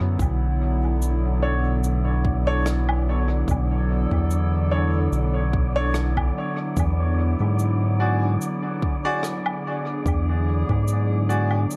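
An echo-heavy, lightly reverberant mix frames this spacious, meditative stretch of ambient dub in B dorian, moving at 73 BPM in 4/4 with a gentle 16th-note swing as Bm7 gives way to E7 at 6.8 seconds. A round, up-front analog bass and a deep electronic kick anchor the groove, while a warbling, nostalgic tape-like pad with chorus holds sustained chords and a dark, rolled-off blend of cabasa, rim click and woodblock trails dub echo. A clear, woody upright piano drops echoing stabs from 1.4 seconds, and an airy, wind-like tuned noise texture breathes in from 0.9 seconds, all cut from a longer piece.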